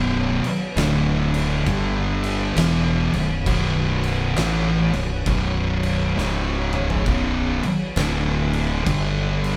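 A thick fuzz guitar sits up front, churning out a distorted, picked riff in B minor, while a second fuzz guitar plays its own riff in the same low range, darker and farther back in the mix. This is hypnotic, heavy stoner and doom metal at a slow 67 BPM in 4/4, with a swung eighth-note feel, and the chords move through B5, D5, G5 and C#5. A growling fingered electric bass adds punchy, overdriven weight beneath the guitars, and an organ-like drone hangs in the background with calm, nasal sustained chords softened by ensemble chorus and its own reverb. An oversized low-tuned acoustic drum kit enters at 0.4 seconds with a boomy kick, fat snare, toms and dark cymbals, its bright stone room pumping around it, and it plays a fill from 6.2 to 7.1 seconds. The band sounds as if it is playing live in one room under light reverb, in a short cut from a longer piece.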